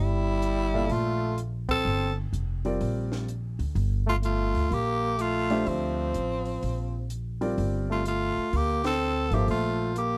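Close, detailed microphones and very little reverb give this short cut from a longer modal jazz piece an intimate, dry sound. It swings at 126 BPM in 4/4 over a single Gm11 chord in G dorian, with a searching, cool mood. A growling tenor saxophone carries the melody, raspy and gritty with vibrato, sitting up front beside a brilliant, forceful trombone that plays a second line with punchy scooped notes. An upright bass plucks a woody pizzicato line up front as the low foundation, and a concert grand piano enters at 0.7 seconds with natural accompaniment, deep bass and audible action noise. A compact cocktail drum kit plays softly behind them on hi-hat, ride, kick and a high-tuned snare, its top end rolled off and dark. The full band hits accents at 1.6 and 8.8 seconds.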